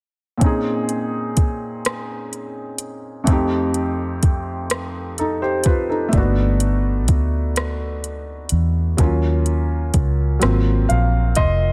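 A dry, close recording with little reverb opens this sultry, yearning slow R&B passage in six-eight, cut from a longer piece, where an intimate concert grand piano, its action noise audible and its low end deep, lays down lush extended chords like Bbm11 and Gmaj9. A produced electronic kit sits up front with a soft kick, metallic hi-hats and rim clicks carrying a tape-warm sheen. At 6.1 seconds a dark, round, foam-muted electric bass joins, and the piano closes with a fill from 10.4 seconds over an Ab13.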